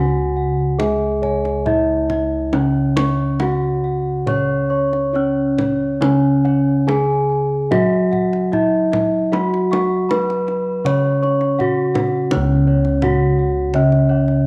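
In a straight 4/4 at 69-84 BPM, this ceremonial, serene excerpt of Javanese gamelan in C# slendro sets a ringing bronze metallophone melody over a lower metallophone accompaniment. High metallophone arpeggios carry a tape echo, and bossed gongs play both bright, beating arpeggios on top and a dark, smooth bass line beneath. A tight, vintage-sounding kendang struck with hard hands joins at 0.8 s, the ensemble sits in a wet echo-chamber reverb, and the music moves into a new section at 12.3 s.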